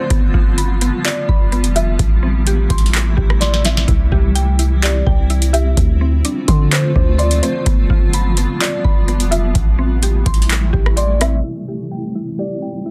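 A half-time 4/4 groove from a booming analog drum machine, with its deep kick, crisp snare, handclaps, metallic hats, rim click and a fill at 3.4 seconds, drives this floating, blissful atmospheric cloud-rap excerpt, as a boomy sine-toned 808-style bass sits up front beneath a blurred, evolving granular cloud pad with sidechain pumping, a soft, felt-muted upright piano melody with audible action noise and digital delay, and woody FM mallet-like plucks arpeggiating through chorus and delay in a dense, dry, heavily limited mix, until the drums and bass drop out around 11.4 seconds and a filter sweep carries it to the end.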